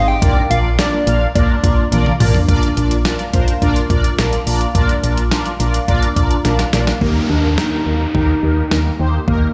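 Synth-pop at 106 BPM in a straight 4/4, this short excerpt cut from a longer piece feels nostalgic and upbeat, moving from a Bb chord to Eb at 7.0 seconds. A solid FM bass sits up front with a punchy, round, dark tone, while a clean 12-bit drum machine drives hi-hat, thumpy kick, medium-tuned snare and toms, with drum fills at 1.9 and 6.4 seconds. Mellow synth brass carries the accompaniment throughout, its detuned sawtooth sound evolving under a filter sweep, vibrato, chorus and phaser. A soft struck synth lead plays a gentle, keys-like melody with a sub octave and chorus, dropping out after the opening bars and returning at 7.0 seconds. From the start until just before the closing section, a vibraphone with medium hard mallets rings out metallic arpeggios in the background through a digital delay and slow motor vibrato, and a downlifter enters for the closing section. The mix has light reverb and the sound of a big system playing in a bare room, with a large studio reverb.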